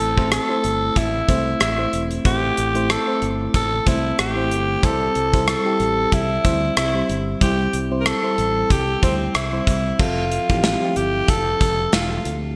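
A lightly swung sixteenth-note groove in 4/4 drives this glossy, romantic slice of 1980s-style pop, cut from a longer piece. From 0.2 s, a gated drum kit sits up front: its punchy kick, medium-tuned snare, rim clicks, hi-hat and crash cymbal ring through a stone room and clipped gated reverb. A fretless electric bass in a low register lays down a warm, punchy foundation bathed in lush chorus. A mellow FM electric piano supplies soft, round, dark accompaniment with a faint noise layer and fast-attack, decaying notes. Over them, a raspy, gritty alto saxophone carries the melody, edgy and present at the front of the mix, as the harmony moves from Am to C and then settles on Fmaj7 at 10.0 s, all within moderate plate reverb and a bright digital 1980s-style production.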